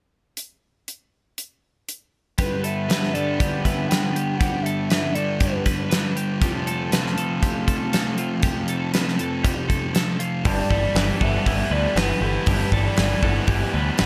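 Shoegaze-tinged dream pop rock at 119 BPM in G major, wistful and dreamy, opens on a gated 80s drum kit with a fat snare and tight kick alone before, at 2.4 seconds, a thick up-front fuzz guitar riff, a biting overdriven guitar with reverse reverb, and chiming, twangy twelve-string arpeggios with delay arrive over G6 and F chords, while a soft, round sine lead with vibrato drifts in and out and a growling overdriven bass joins at 10.5 seconds in this cut from a longer piece.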